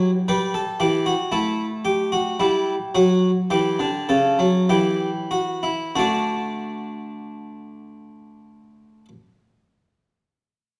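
In a straight 4/4 pulse between 46 and 60 BPM, the music slows down over its opening 5.9 seconds before settling into its next passage. This is a lively, joyful baroque-style two-part invention in D major for solo harpsichord, tuned to A4 = 436 Hz and cut from a longer piece. The Flemish-style harpsichord sits up front with an airy, brilliant, plucked tone, its octave strings adding sparkle as it moves between C#3 and B4. The harmony travels from G to A7 and arrives on D at 5.9 seconds, where a new section begins, and the harpsichord's playing ends at 9.1 seconds. A wet recital hall reverb with a 1.6-second decay surrounds the instrument, and the production has a dark, warm character.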